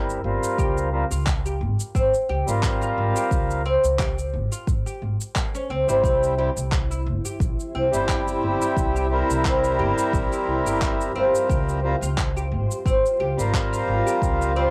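A reedy, nasal harmonium sits up front from 0.0 s, its dark tone softened by a low-pass filter, tape echo and sidechain pumping, while a woody pizzicato upright bass with steel strings pumps underneath. Electronic cabasa and handclaps slip in almost at once, and at 0.6 s a deep, tape-warm electronic kick joins a bright, plectrum-plucked oud whose double-strung arpeggios carry their own tape echo. This organic downtempo excerpt moves in 4/4 with a light swing on the sixteenths, its harmony rocking between C and Dbmaj7. At 6.8 s a blurred, detuned granular cloud pad rises in the background with slow-attack sustained chords, its built-in reverb and long release adding a hazy, evolving layer. The small room and cassette home recording give the whole a warm, meditative intimacy.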